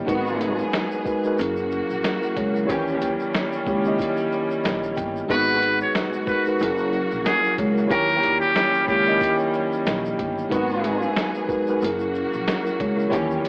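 Boom-bap hip-hop at 92 BPM in G# minor, this dark, tough groove is cut from a longer piece and swings its sixteenths over a cycle of G#m7, F#7 and D#7b9. A compressed, pitched-down sampler kit sets the pulse with a thumpy kick, medium-tuned snare, hi-hat and shaker, re-recorded in a large room, while a woody pizzicato upright bass with transformer saturation holds the low end. A mellow tine electric piano sits up front with clean accompaniment through its built-in speakers, framed by a clear, focused string section holding sustained chords and a second, smooth bowed section playing stabs through analog delay. A grainy egg shaker ticks quietly in the background. At 5.3 seconds a buzzy, breathy trumpet with a metal mute takes a brief, intimate jazz-style solo through analog delay until 9.4 seconds. The whole mix carries a dry, gritty hardware character with vinyl crackle, an AM radio tint and light reverb.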